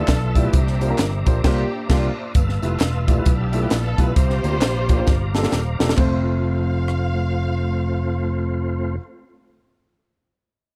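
A dark, warm and dry production frames this uptempo gospel cut in F major at 132 BPM, swinging in 4/4 with a reverent, hopeful mood as it moves from G13 and C9sus4 to a landing on F at 6.0 seconds. A lush, bowed string section carries the melody with vibrato and portamento over an intimate baby grand piano whose action noise can be heard, while a smooth tonewheel organ with key click, slow rotary speaker and chorus vibrato holds sustained chords. Up front, a punchy, amped fingered electric bass and a polished fusion kit with a high-tuned snare, tight kick and dark cymbals drive a band accent from 1.4 to 2.3 seconds and a drum fill from 5.1 to 6.0 seconds, as very quiet handclaps and tambourine sit underneath until 6.2 seconds.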